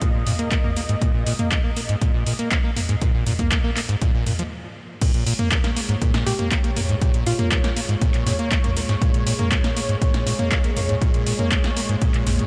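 A squelchy, resonant acid bass riff with overdrive, cassette-tape grit and analog delay opens this trippy, raw acid house excerpt at 120 BPM alongside a punchy, dry kick, an analog drum machine with metallic hats, claps, snare, toms and crash, and a lush, detuned sawtooth pad pumping under sidechain with phaser, all soaked in a dreamy, huge ambient reverb, until a stop at 4.5 s gives way to a drop at 5.0 s where the chords shift from Bb7 (third omitted) to Bbm7 and a hollow, bouncy square pluck with tape echo briefly surfaces in the background from 6.3 to 8.0 s.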